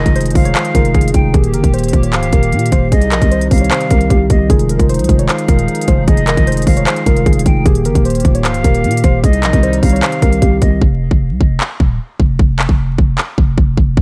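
Vinyl crackle and a digital ambience frame this dark, menacing trap excerpt at 152 BPM in a half-time 4/4 feel, set in F minor and cycling through Fm7, Eb and Cm. Muted, felt-like synth keys carry the melody with chorus, tape echo and a filtered noise layer, while a pure concert flute with vibrato adds a second line above a mellow tine electric piano and a hollow, detuned pad in the background. A growling, buzzy 808 bass and up-front trap drums with a hard-clipped kick, crisp hats and handclaps run to 14.0 s. The keys, flute, piano and pad stop at 10.8 s, and the hi-hats drop out over the closing F5 chord.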